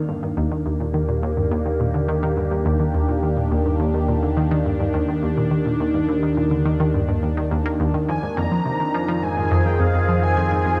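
A bright, up-front analog pluck opens this short cut from a longer piece, its round, detuned sawtooth-and-square tone snapping in with a fast attack and decaying into chorus and analog delay as it carries the riff. This is ambient, sequencer-driven space music at 105 BPM in a straight 4/4, with an expansive, cosmic mood. A phased analog pad holds sustained chords across the full length, its swirling, evolving texture treated with phaser and chorus, while a mellow analog drone enters at 0.2 seconds as the bass, a slow-blooming pulse-width-modulated tone with a long release. The harmony rests on Ebmaj7 before shifting to Fm7 at 8.1 seconds, where a breathy, flute-like synth lead arrives with a soft, wave-folded tone, vibrato, ensemble chorus and analog delay to sketch a high melody. A moderate plate reverb of 2.8 seconds soaks the mix in a dreamy haze.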